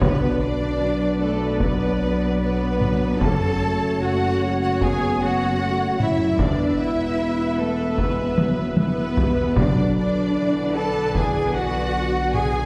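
Distant taiko drums struck with hard sticks drive this epic, heroic orchestral film cue at 76 BPM in 4/4, their sound carrying the air of a large room, with a fill between 8.4 and 9.6 seconds. A lush violin section with focused vibrato carries the melody, while a second, more intense violin section and an airy, hollow concert flute trace a second line in the background. A clear viola section fills in the accompaniment. Beneath it, an expressive cello section with portamento and a smooth, even double bass section hold the low end, and mellow French horns and roomy trombones sustain chords behind them. In B dorian, the harmony moves from Bm through F#m and E5 before returning to Bm at 9.6 seconds, where a very quiet, close and dry timpani briefly sounds. The whole passage sits back in a wet scoring-stage reverb and is cut from a longer piece.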